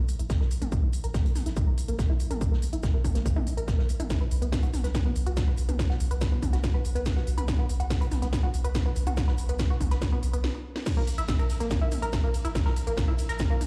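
Relentless and intense, this driving peak-time techno cut, taken from a longer piece, runs in a straight 4/4 pulse. An up-front, heavy electronic kick anchors the groove beneath a layered techno kit of cracking snare, smooth hats, ride, crash and toms, while a distant, roomy acoustic kit adds background hi-hat, shaker and a medium-tuned snare with a rolled-off top. A deep, round sine sub bass pumps with sidechain compression, overdrive and a low-pass filter, and a tight, detuned sawtooth synth riff, wave-folded and plucky, carries chorus, phaser, tube saturation and dub echo. A filter sweep rides the synth through the opening, the harmony settles on B5 from 4.1 seconds, and a drum fill and stop at 10.4 seconds set up the drop at 10.9 seconds. The whole mix sounds as if played through a big sound system in a bare room, bathed in large studio reverb.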